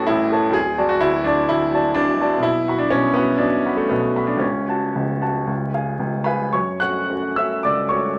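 A vinyl crackle sits under a clear, woody upright piano that plays alone from the opening moment in this brief romantic character piece, cut from a longer work. The mood is brooding and stormy, and the pulse moves with a flexible rubato feel in common time. The piano covers a broad span, from deep bass notes up into the high treble, and the harmony travels through A, D, B5 and an F sharp minor chord over C sharp before settling on C sharp. At 6.5 s a new section arrives on F sharp minor, carrying the music to its cut at 8.2 s. The instrument sounds polished and up front in the mix, framed by a moderate studio reverb that adds a sense of room while keeping the playing present.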